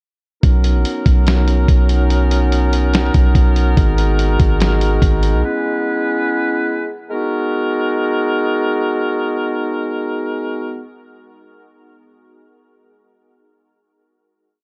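A mellow woodwind section, tight and vintage with a light vibrato, sits up front holding sustained classical-style chords from 0.4 seconds through to 10.9 seconds in this short, melancholic and hazy cloud-rap piece in G# minor at 144 BPM, felt in half-time. Beneath it, a deep 808-style bass plays long, sine-like sub-bass notes with a fast attack and gentle decay, following the kick and sliding in pitch. A lo-fi sampler-style drum kit, compressed and muffled with a thumpy kick, a medium-tuned snare and hi-hat, lays down a sparse half-time beat with the character of having been re-recorded in a large room. The harmony moves from Bmaj9 to G#m9 and E6 during the verse; the bass and drums drop out around 5.4 seconds, leaving the woodwinds to hold a final G#m9 alone. The whole recording carries the worn, warbling pitch drift of old cassette tape and very little reverb, giving it a dry yet dreamy feel.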